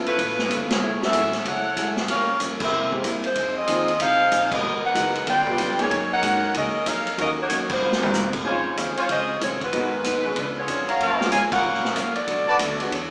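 This excerpt sounds like a band playing live in one room, heard through a small speaker and bathed in a wet, large studio reverb. It is energetic big band swing at 188 BPM in Db major, with a strong swing feel and rich, altered jazz harmony. A bright saxophone section carries the melody up front, its loose ensemble sound colored by vibrato. Behind it, a brilliant upright piano and a dark, clean, picked hollow-body electric guitar comp in the background, while a thumpy pizzicato upright bass with gut strings sits low and woody beneath them. The natural-sounding acoustic drum kit, up front, drives the swing with a punchy kick, medium-tuned snare, hi-hat, ride, crash and toms, and plays a short fill at 7.8 s. From 8.4 s to 12.6 s a clear, tight trumpet section adds stabs with a smooth top.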